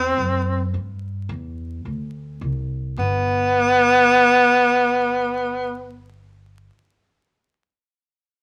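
A bright, punchy tenor saxophone carries the melody up front in this short cut from a longer jazz piece, playing a forceful solo line with vibrato in a low range from B3 to C4. Beneath it, a woody upright bass with steel strings is plucked pizzicato between G1 and G2, sitting well back in the mix. The feel is relaxed and warm small-group swing and bop in G major at 107 BPM in 4/4, with a strong swing on the eighth notes. The harmony moves from a rootless D9 through Em and Csus2 before settling on G as a new passage begins at 3.0 seconds. The saxophone stops at 6.0 seconds while the bass carries on alone until 6.7 seconds. A moderate club reverb and a layer of vinyl crackle give the recording an intimate, vintage character.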